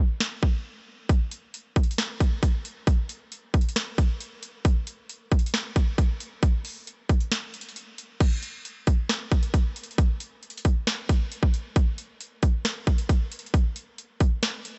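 Set in a digital ambience with its top end rolled off above 8.0 kHz, this hard-hitting, melancholic half-time hip hop fragment is carried entirely by an up-front, overdriven electronic trap drum kit of hard-clipped kick, sharp snare, metallic hi-hats, rim clicks, finger snaps and crash cymbal, which enters at 0.2 seconds and drops into a brief break at 7.3 seconds before pressing into a new section at 8.2 seconds.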